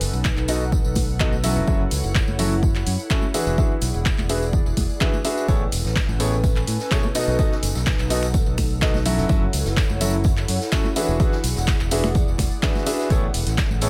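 Feel-good and euphoric, this piano house excerpt, set in a small room, rides a bright concert grand piano riff with tape echo over a punchy, up-front electronic kick, a tape-warm analog drum machine of finger snaps, handclaps and hi-hat, a direct fingered electric bass with tube saturation, soft-handed tambourine and congas in the background, and an airy, breathy pad with chorus, all moving through B7, F#m7, E9 and Amaj9 while a very quiet big-band drum kit of hi-hat and snare joins at 5.5 seconds.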